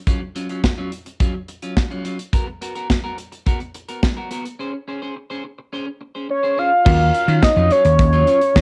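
Recorded at home on cassette in a small, moderately reverberant room, this slick, late-night early-eighties boogie funk fragment at 106 BPM in 4/4 opens at 0.1 s with a bright, twangy, slightly broken-up picked electric guitar riff in lush chorus over an airy, polished acoustic drum kit with a punchy kick and medium-tuned snare, before a round, octave-layered, wave-folded synth lead with chorus and vibrato takes the melody up front at 6.3 s, and an amped, vintage slap bass and a very quiet, intimate grand piano, its action noise audible, join at 6.9 s on a shift from jazzy add11 and major-seventh chords to Ebm9.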